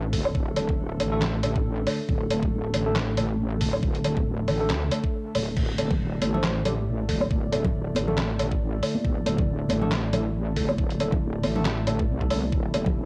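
A dark analog pad and a heavy, saturated wobble bass open this short, brooding deep dubstep excerpt at 138 BPM in a half-time feel, the detuned pad holding moody sustained chords in the background while the sawtooth bass sits up front. Clean tine electric piano stabs with dub echo join a knocking electronic kick and a gritty, pitched-down sampler-style kit of snare, hi-hat, handclaps, woodblock and crash, all carrying a cassette-tape color in light reverb. Soft-handed congas enter in the background at 5.8 seconds, and at 6.3 seconds a very quiet, breathy low ney with vibrato surfaces for a brief phrase.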